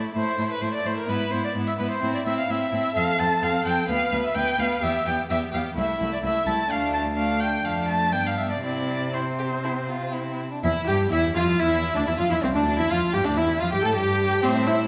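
Cheerful and spirited, this quick classical-period movement for string quartet moves at 127 BPM in 4/4 and C major, with a rubato feel, and is cut from a longer piece. The lead violin carries the melody with a warm, expressive tone, sitting up front yet slightly distant, its vibrato and portamento giving the line a singing quality. A second violin adds a clear, focused counter-line, while the rich viola fills the accompaniment with its own expressive vibrato and portamento. Beneath them, the cello holds the bass with a focused, up-front sound. The harmony moves through A minor, F, D minor and E minor shades before settling on G and C, and a second section begins at 10.6 s and closes on an Emadd11 chord at 13.5 s. Everything sits in a wet scoring-stage reverb with a 2.0-second decay that lends the quartet a spacious glow.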